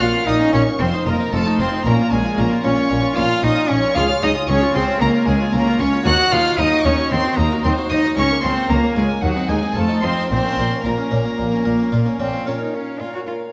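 Dramatic and stormy, this short cut from a longer baroque-style concerto movement in B-flat minor moves at 114 BPM in a straight 4/4, with a solo episode feel. A single close, up-front cello carries the melody with a rich, reedy gut-string tone, heard until 13.3 seconds, while a chamber violin section plays a high line above it with light vibrato and a smooth top. A second violin section adds a background line, and a dark, nasal viola section fills in the accompaniment. A bright, plucked harpsichord in the French style sits in the background, and the bass comes from a dark cello section and a rich double bass section, the double basses stopping at 12.3 seconds. The harmony circles B-flat minor through its dominant seventh, the relative major, E-flat minor and diminished chords, all set in a wet recital hall reverb that gives the period-style ensemble a resonant bloom.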